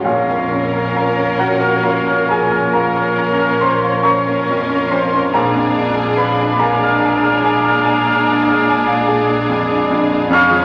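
A slow, rubato 12/8 lilt at 43-50 BPM carries this lyrical, lush romantic excerpt in Bb minor, where an intimate, up-front baby grand piano with audible action noise and long sustain sings the melody, a faint violin section plays a high melodic note, and a distant violin section, a mellow, very quiet clarinet, a pure silver flute with vibrato, and a clear oboe weave second lines over soft-attack violas, dark, roomy French horn chords, focused cellos and a very quiet double bass section, all bathed in scoring stage reverb and vinyl crackle as the harmony moves from Bbm to Bb7 at 5.3 seconds.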